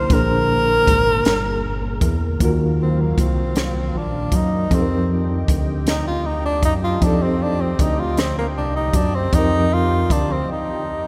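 A slow, straight six-eight sway carries this tender, intimate R&B fragment from a longer piece, set in the long, wet reverb of a church or concert hall. A breathy, close-miked tenor saxophone sits up front with vibrato, taking a jazz-style solo from 2.4 seconds over a reedy, slightly out-of-tune electric piano with fast tremolo, a lush, detuned unison pad with chorus in the background, and a fat, thick analog bass. A compact, dry cocktail kit of hi-hat, punchy kick and high-tuned snare keeps time through chords moving from Bb7 to Ebmadd9 and F9sus4 before a brief break at 10.5 seconds.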